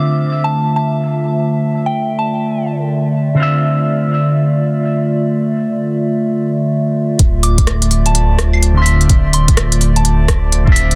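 A warbling, lo-fi tape-like pad holds a Dm9 chord with 12-bit sampler grit and sidechain pumping beneath a clean, twangy envelope-filtered electric guitar and a gentle, pure FM synth bell melody in this ghostly, wistful future garage piece at 126 BPM with swung 16ths in D minor; at 7.2 seconds a deep, rumbling detuned saw bass, an electronic kick drum and an organic electronic kit of crisp hi-hat, claves and rim click with a clipped snare arrive, joined by a faint glassy harmonics texture drifting in the background, all within a dense, heavily limited master.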